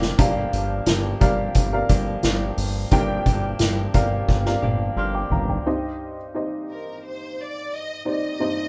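A drum fill from a soft-mallet kit with a punchy kick opens this driving, earnest piano-driven pop cut, as a dark, woody upright piano with audible action noise, a fat, detuned sawtooth bass and a clean, compressed electric guitar riff with spring reverb all start together over Gm7. The drums and bass drop away at 5.6 seconds and the guitar at 6.2 seconds, as the harmony moves to Cm. At 6.7 seconds a bowed studio violin section with vibrato and a soft attack carries the melody beside the mellow, slightly detuned piano, all captured as a band playing live in a small room.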